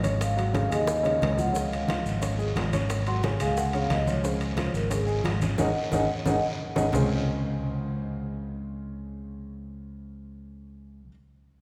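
This lively, danceable Afro-Cuban jazz excerpt, cut from a longer piece, opens with most of the band at once: an intimate baby grand piano comping with audible action noise and short sustain, an up-front fingered electric bass, and a bed of percussion from ringing low-tuned congas, tight high-tuned bongos struck with hard hands, metal-shelled timbales and grainy maracas. Almost immediately, at 0.2 seconds, a vibraphone played with soft mallets takes the lead in a solo, its metallic, airy tone colored by a medium motor vibrato. A raspy, distant guiro joins the percussion at 1.6 seconds, and drum fills punctuate the groove early on and again near the end of the solo, where the band hits a shared accent. The harmony moves between a suspended dominant and a major-seventh home chord. At 7.0 seconds the percussion drops out, leaving the piano and bass to carry a brief closing passage until 11.1 seconds, all within the long, wet wash of a church-like reverb.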